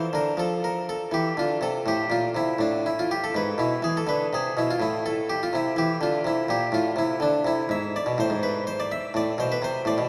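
A solo harpsichord carries this grave, solemn excerpt from a baroque-style suite movement, its single set of strings giving a bright, airy, plucked tone that sits up front. The pulse moves at 82 BPM in dotted quarters within a 12/8 metre, but the playing is rubato, so the time bends freely. Across roughly 10 seconds the harmony passes from D minor through an A power chord and E over G-sharp to A minor, then moves to a G-sharp augmented chord before settling back on A minor at 9.1 seconds. The part spans from G#2 up to E5, with the instrument built in the Italian style. A wet church reverb with a long decay surrounds the playing, lending the solemn mood a spacious, resonant halo.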